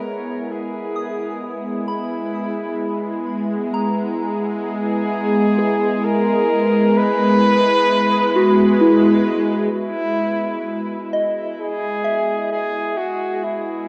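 Ambient and serene, this reflective excerpt drifts at 65 BPM in a straight 3/4, resting on an Emaj7 chord and slightly sharp of standard pitch at A4 = 441 Hz. A detuned sawtooth analog pad holds smooth, soft-attack chords with chorus and a moving notch, while a pure FM synth bell spins gentle, fast-attack, decaying arpeggios up to D#6 through chorus and tape echo. Up front, a distant, roomy flugelhorn with light vibrato sings a classical-style solo melody through tape echo, and all three parts fade in together over the first 9.7 seconds into a dreamy mix soaked in an 8.6-second reverb.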